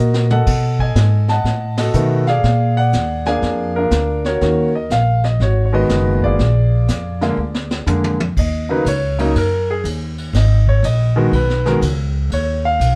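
Swinging and moody, this brief jazz piano trio excerpt at 122 BPM in Eb minor pairs a clear, long-sustaining concert grand carrying the melody with a woody pizzicato upright bass sitting up front and a distant, roomy vintage brush kit with a high-tuned snare and punchy kick; it opens on a drum fill, hits a band accent at 1.7 seconds and turns to a piano solo from 8.4 seconds, set in a moderate studio ambience heard from further back in the room.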